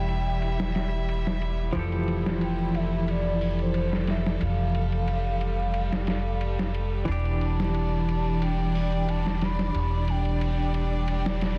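Vinyl crackle and a dense, heavily limited master frame this smoky, hypnotic trip hop excerpt, set in a small room with light reverb. At 90 BPM in straight 4/4 and E phrygian, a thumpy, woody pizzicato upright bass sits up front in its low register. A clean, fingered semi-hollow electric guitar carries the accompaniment through tremolo, tape echo and a filter sweep that spans the full 11.6 seconds. A bowed violin section holds smooth, close chords with vibrato behind a low-pass filter, while a pure, breathy sine lead with a dark, soft-attack tone floats the melody above, touched by subtle chorus and tape echo until 11.4 seconds. A gritty, compressed sampler-style drum kit enters at 0.1 seconds, its hi-hat, ride and medium-tuned snare muffled by low-pass filtering and studio reverb, as the harmony moves from Em7 to Fmaj9 and back to Em7.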